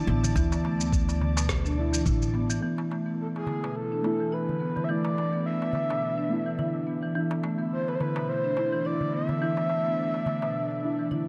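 Organic downtempo at 106 BPM with a lightly swung 16th feel and a meditative, warm mood, built on a Dsus2 to Esus4 move, with an up-front marimba playing arpeggios through tape echo while a deep, wave-folded chord stab and an airy, breathy pad pulse under sidechain pumping in the background. A woody pizzicato upright bass, a gritty, thumpy sampler-style electronic kick and a shaker with rim click carry the opening until 2.6 s, while a crisp, small metal-shell darbuka taps softly throughout. From 2.6 s a filter sweep moves across the pad, and at 3.2 s a breathy, flute-like synth lead with vibrato takes the melody, all set in a dark production with light reverb.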